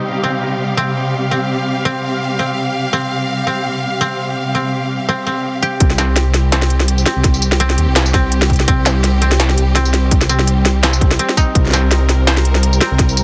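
Half-time drum and bass at 167 BPM in C minor, cinematic and heavy and cut from a longer piece, opens with a lush, distant string section holding sustained chords through sidechain pumping and a low-pass filter while a woody koto played with fingerpicks spins arpeggios through tape echo, until the drop at 5.8 seconds brings in a deep, rumbling detuned saw bass, a hard-clipped electronic kick and an overdriven, up-front industrial kit of clanging snare, crisp hats and tambourine, set in light reverb within a dense, heavily limited master.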